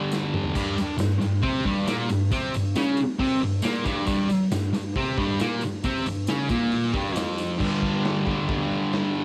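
A thick, fuzzed-out electric guitar, double-tracked and up front, opens on a G5 chord while a raw garage drum kit tumbles through a quick fill, then settles into a swaggering, rowdy riff over an Fsus24 chord in this short cut from a longer garage rock piece. The drums sound saturated and gritty on cassette tape, with a punchy kick, a medium-tuned snare and a rolled-off top, and a jingly tambourine sits close and dry in the background until 7.5 s. At 7.6 s the riff swings back to G5 for a brief new section, all captured as a dry home recording on cassette.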